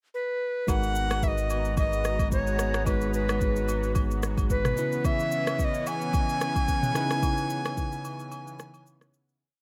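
A hypnotic amapiano groove at 110 BPM in 4/4 with a 16th-note swing arrives at 0.7 seconds on an electronic afro-pop kit of deep kick, rim click, shaker and toms, together with agogo bells in the background and a round analog bass holding sustained low notes until 4.7 seconds. Over G#m9 and then C#m9 chords in G# minor, a bell-like tine electric piano plays held, spread chords while a lush, warbling unison pad with chorus and sidechain pumping sustains beneath it. Up front, a reedy, airy tenor recorder with digital delay and chiff opens the piece with motif-based call phrases, and the whole piece fades out from 7.2 seconds into a closing break in light, digital ambience.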